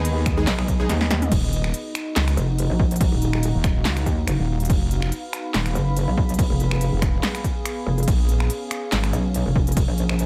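Menacing and heavy, this heavy wobble dubstep passage, cut from a longer piece, rides a half-time 142 BPM groove in Eb minor, moving from Abm through Ebmadd9, Fdim and Bbm7, with two overdriven wobble basses up front, one mellow and chorused, the other metallic, FM-based and distorted, joining at 0.5 s. A punchy overdriven kick and a big-room dance kit with crisp hats, snare, toms, handclaps, finger snaps and crash cymbal drive the drop, with a drum fill at 0.9 s, while a warbling, nostalgic lo-fi pad pumps beneath. At the opening, a very quiet, lush bowed string section holds sustained chords until 1.3 s alongside airy supersaw stabs with tape echo, and the whole sits dry with little reverb.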